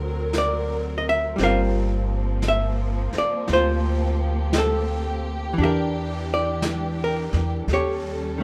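Swung eighths at a slow 57 BPM in 4/4 carry this wistful, smoky jazz ballad, where a clean, picked hollow-body archtop guitar sits up front beside a woody pizzicato upright bass, lush bowed strings with vibrato hold soft-attack chords behind them, and a dark brushed drum kit with a rolled-off top enters at 0.3 s, the room's light reverb framing harmony that moves from D7b13 through Gm11 and Em7b5 to Eb7#11.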